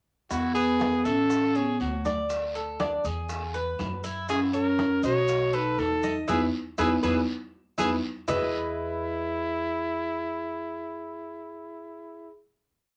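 A warm, up-front trumpet with light vibrato carries a call-phrase melody through this danceable Cuban son and guajira piece, shadowed by a mellow soft-mallet vibraphone harmony line mostly in sixths, a picked tres guajeo on metallic double strings, and a dark, thumpy gut-string upright bass tumbao that anticipates the chords, while ringing congas, tight, distant bongos, woody claves, a raspy guiro and grainy maracas sit in the background of a moderate club reverb until the percussion stops at 8.4 s and the band holds a final chord to 12.3 s.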